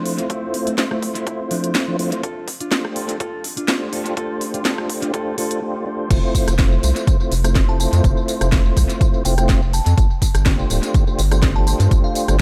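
A dry, echo-heavy mix frames this soulful deep house excerpt in F major at 124 BPM. A dark, clean electric guitar melody with gritty sampler texture and analog delay opens alongside mellow tonewheel organ stabs, swirled by slow rotary speaker and dub echo, that pump against a punchy, tape-warm electronic kick and a layered house kit of cracking snare, crisp hats, rim click, tambourine and crash. After a short break the guitar has stopped, and at 6.1 seconds the drop arrives as a round, deep analog bass sits up front, while from 7.7 seconds a glassy, warbling FM synth bell chimes in the background over a lightly swung groove moving between Fmaj7 and G9sus4.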